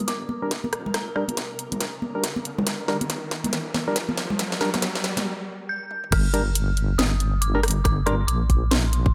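A deep, detuned wobble bass sits up front through this heavy, dark deep dubstep excerpt in G minor, moving at 139 BPM in 4/4 with a swung, half-time feel. Around it, a garage drum kit with a cracking snare drives a build-up full of drum fills, joined by congas played with soft hands and soaked in dub echo. A hollow, percussive organ stab sits in the background under a filter sweep, while an eerie, inharmonic synth bell rings high with chorus and dub echo, and a grainy, flickering granular texture hovers behind the opening. An electronic riser plays from 1.4 to 5.3 seconds, and during the brief break that follows the bell returns at 5.7 seconds, before the drop lands at 6.1 seconds, where a tight, tape-warm electronic kick enters. Light digital ambience surrounds the mix.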